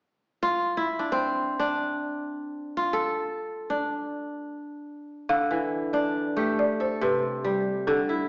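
A wet recital-hall reverb and a small-speaker sound frame this flowing, reflective fragment of a longer West African traditional piece in free time and D dorian. The up-front kora enters at 0.4 seconds and plays alone, its warm, ringing, crisp fingerpicked arpeggios spanning its low and middle register. At 5.3 seconds a woody, round balafon played with rubber mallets joins with a higher melody over a move to D minor, and both play on until the passage breaks off at 8.3 seconds.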